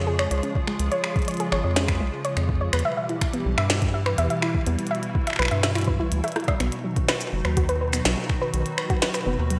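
Intricate and playful, this IDM excerpt sets a hollow, flute-like pad of sustained chords with ensemble chorus, sidechain pumping and shimmer reverb beneath soft, round pluck arpeggios with chorus and delay, a rubbery, bouncy square bass up front, a glitchy, overdriven kit of finger snaps, clicky hats, rim clicks, shaker and tiny snare with gated reverb and a fill at 6.2 seconds, a soft overdriven electronic kick, and a very quiet flickering, grainy texture entering at 7.1 seconds, all in a bright 1980s-style digital hall.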